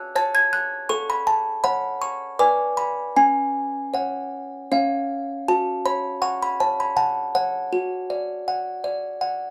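The recording is close and detailed, with very little reverb, so the solo music box sits up front with every plucked tine clearly audible. This short cut from a longer classical lullaby moves in a rubato 3/4 around 80 BPM in F# minor, tuned slightly low to A4 = 438 Hz. The music box is a large one with a delicate, tinkling and airy tone, slightly out of tune, and the mood is fragile and eerie. It plays alone throughout, ranging from C#4 up to A6. The harmony drifts from F# minor through a diminished chord and a suspended C# before settling on C#, then at 5.5 seconds a second section opens on a bare F# fifth and moves to D over F# by 7.7 seconds.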